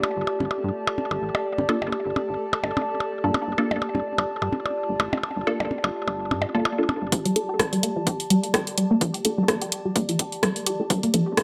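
Clinical and quirky, this minimal techno excerpt opens with up-front percussion blips through analog delay, a very quiet swarming drone, a warbly, lo-fi tape-like pad with chorus and sidechain pumping, and a rubbery, hollow square bass, before a muted, deep filtered dub chord stab with phaser enters at 1.7 seconds. At 7.1 seconds a build-up begins: an electronic kick drum and a punchy analog drum machine with hi-hat and rim click arrive, a filter sweep moves over the stab, and a juicy, squelchy resonant blip pluck with dub echo joins in. The echo-heavy mix sits in a moderate plate reverb with a digital ambience.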